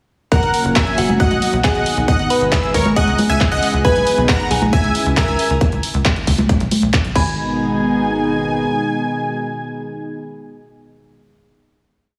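A four-on-the-floor punchy electronic kick drives this bittersweet, emotional uplifting trance piece at 136 BPM in G# minor, joined by a programmed big-room kit of closed and open hats, high congas, claps and crash, and a galloping sixteenth-note sawtooth sequencer bass that pumps with sidechain compression. Over a lush, warbling pad of sustained chords, a detuned supersaw stab carries a repeating riff in thirds and sixths, a crystalline FM bell repeats its own riff in octaves, and a mellow plucky unison lead with vibrato sits in the background doubling the anthem an octave higher. The stab, bell and lead are bathed in digital delay, and everything sits in a lush hall reverb under a heavily compressed, radio-like sound. The drums drop out at 7.2 s, leaving the bass and melodic layers to carry on into the final hit that closes the piece.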